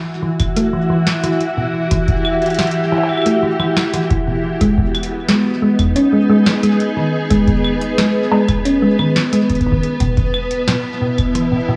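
A silky, slow-attack string machine opens with Emadd9 chords at 0.0 s, joined at 0.2 s by round, tine-like thumb-piano-style plucked arpeggios trailing digital delay, then at 0.4 s by a deep analog kick and a booming drum machine of crisp snare, metallic hats, claves and cowbell, all at 89 BPM in 4/4 as the harmony moves through G#m to Bsus4, giving this eerie, cerebral IDM fragment a lush hall reverb and the warbling pitch drift of worn cassette tape.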